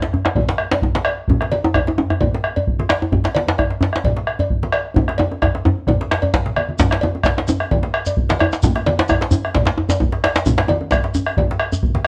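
Powerful and festive, this short cut from a longer West African traditional drum ensemble piece in straight 4/4 sets a deep, dark, saturated bombo up front beneath two warm, deep, close, dry djembes, one played with soft hands and the other sitting up front, ringing low-tuned congas and a metallic cowbell, with a drum fill from 5.0 s leading into a second section where a grainy, mellow shekere joins at 6.8 s, the whole mix colored by moderate studio reverb and the warbly pitch drift of worn cassette tape.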